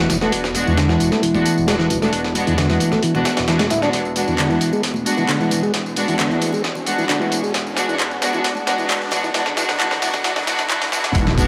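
Energetic and raw, this 133 BPM breakbeat excerpt builds across its whole length over an E7 chord, with a gritty, thumpy sampler-style drum kit up front breaking into a fill from 3.9 seconds, layered tape-toned tambourine and handclaps, very quiet hard-handed congas, a swirling phased saw bass, a clean tonewheel organ riff with key click and dub echo, up-front floating string stabs under a filter sweep, a deep, very quiet ambient pad, and a faint riser entering at 4.8 seconds, all set in plate reverb with vinyl crackle.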